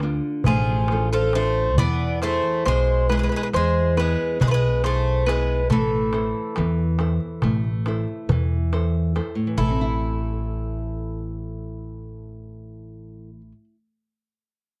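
An up-front Greek bouzouki carries the melody in this dark, wistful Greek folk excerpt, its mellow, metallic double strings picked with some octave-doubled courses. A second bouzouki, brighter and lower in the mix, plays a supporting line underneath. A small, fingerpicked nylon-string guitar fills in the accompaniment, while a woody, thumpy upright bass on gut strings sits up front with pizzicato notes. A clay darbuka with a natural skin adds warm percussion in the background before dropping out at 10.0 seconds. The tune moves in 9/8 at 139 BPM in A harmonic minor, gradually speeding up as the chords pass from Dm to E to Am, and a new section arrives at 9.6 seconds. The sound is dry and close, in the manner of a 1970s studio recording.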